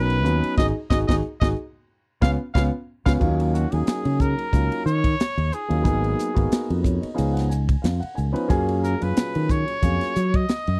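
A dry, close studio sound in a 1970s style frames this nocturnal, funky slice of electric jazz fusion, cut from a longer piece and riding a lightly swung sixteenth-note feel. A clear, vintage-toned trumpet with light vibrato, scooped notes and a slapback echo opens with a solo over band accents, and a drum fill arrives at 1.9 seconds. The punchy fretless bass sits up front with a crisp, polished kit of dark cymbals, high-tuned snare and tight kick, while a mellow grand piano with long sustain adds a fill at 6.5 seconds.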